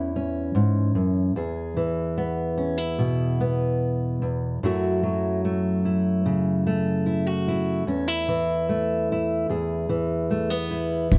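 A fingerpicked steel-string acoustic guitar carries this nostalgic acoustic folk excerpt on its own for almost the full 11.2 seconds, its dark tone up front with audible finger squeak and an auditorium sense of space, moving through A, E, F#m7 and Esus4 at a relaxed 74 BPM in 4/4. Only at 11.1 seconds do a woody, pizzicato upright bass, set in the background, and a soft brush drum kit with a punchy kick and hi-hat, recorded in a small room, come in. Light reverb and a warm, dark production give the piece a gentle, reflective glow.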